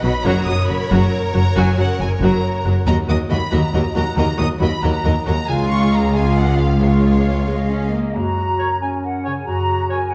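Adventurous and heroic, this cinematic film-score passage moves at 91 BPM in a lilting 6/8, moving through F#, D# minor and C# before settling on Gb. A lush violin section carries the expressive, vibrato-rich melody up high, with a second, more focused violin line beneath it and a smooth, even viola section filling the middle. Bowed cellos sit distant in the background while the double bass section anchors the low end, and a ringing concert harp plays arpeggios throughout. Near 7.3 seconds, shortly before the strings stop, a pure, up-front flute section enters with a tongued line, joined at 8.2 seconds by a mellow solo clarinet and soon after by a distant, roomy cor anglais. The production is dark, set in a generous scoring-stage reverb, and the passage is cut from a longer piece.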